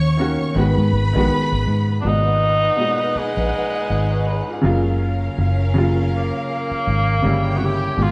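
Recorded live in a stone room with moderate reverb, this silky, cinematic snippet of lush 1970s-style soul sets a dark, round, foam-muted electric bass up front beneath an intimate baby grand piano with audible action noise and a distant, bowed violin section rich with vibrato and portamento, before a breathy, whispered tenor saxophone takes a solo from 2.0 seconds and a slightly broken-up, lo-fi electric guitar slips in a brief picked riff at 4.1 seconds.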